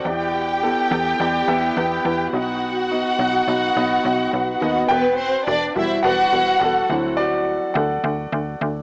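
In a straight 4/4 at 105 BPM, this bittersweet, dramatic pop piece in E minor sets a polished, up-front grand piano with a cassette-tape tint over a snappy, metallic FM bass, while a lush, vibrato-rich violin section carries a second line through cassette tape and analog delay until 6.9 seconds, the piano taking a solo from 4.9 seconds, heard through a moderate spring reverb with the small-speaker sound of a home cassette recording.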